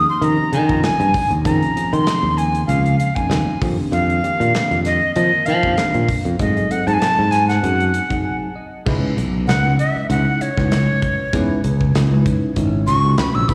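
Funky and intense, this electric jazz fusion excerpt moves at 97 BPM with a 16th-note swing, its breathy, reedy flute carrying the melody up front with slapback and tape echo while a bell-like tine electric piano with analog chorus comps over chords such as Eb13sus4 and Ab7b9. A growly, punchy fingered bass sits prominently beneath, and a tight-kicked studio drum kit joins at 0.2 seconds with hi-hat, snare and crash. After an electric piano fill and a brief break, the music settles into C# minor at 8.9 seconds for a crisp flute solo, all heard as a live gig through the venue's PA with light recital-hall and small-room reverb.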